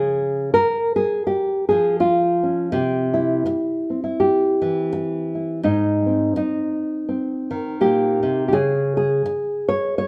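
Folk for solo fingerstyle acoustic guitar, this brief excerpt of a longer piece moves at an unhurried 83 BPM in 4/4 with a gentle swing on the eighth notes, and the mood is haunting and reflective. A nylon-string guitar carries the whole passage alone, sitting up front with a deep, classical tone and a thumb-plucked touch that ranges from Ab2 up to Db5. The harmony travels from Db6 through C and Ab before settling on Db5 near 8.5 seconds. The tuning sits a touch below standard pitch, at A4 = 439 Hz. A moderate, large studio reverb surrounds the guitar, giving it the open sense of a live performance in one room.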